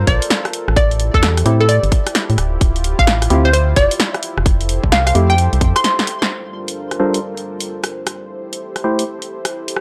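A dark, organ-like FM bass sits up front beside a tight, layered electronic kick in this soulful, skippy two-step UK garage clip at 130 BPM in G dorian, swung on the sixteenths over a rootless Gm11 followed by Am7, Dm11 and Fmaj9 chords. A punchy analog drum machine adds hi-hat, rim click and a tape-warm snare, while a bright, bouncy square-wave pluck carries the melody with chorus and tape echo. A smooth, mellow pad pumps under sidechain, and from 1.5 seconds a full-bodied, wave-folded organ stab with a filter sweep joins; the bass and kick drop out at 5.7 seconds before a drum fill and a band accent at 6.2 seconds, all in a dry, gritty recording with light digital reverb.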